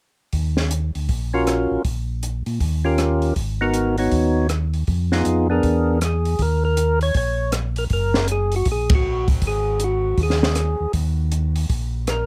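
A percussive tonewheel organ carries the melody from 1.3 s, its fat, lightly overdriven tone sharpened by third-harmonic percussion and turning through a slow rotary speaker, sitting up front in the mix. This short excerpt of a smoky, soulful soul jazz organ trio moves at 158 BPM in 4/4 with a swung eighth-note feel, set in Eb minor. Beneath it, a second tonewheel organ supplies the bass line, mellow, round and dark, its clean sound colored by chorus vibrato and a slow rotary speaker. A compact cocktail drum kit, acoustic and smooth in a small room, works hi-hat, ride cymbal, rim click, a punchy kick and a high-tuned snare. The harmony opens on Ebm7, passes through Eb7, Abm7, Fm7b5 and E7#11, then settles into bare Ab5 and Eb5 chords in the second half, with a band accent landing at 8.9 s. The close, detailed recording carries little reverb, keeping the trio intimate and present.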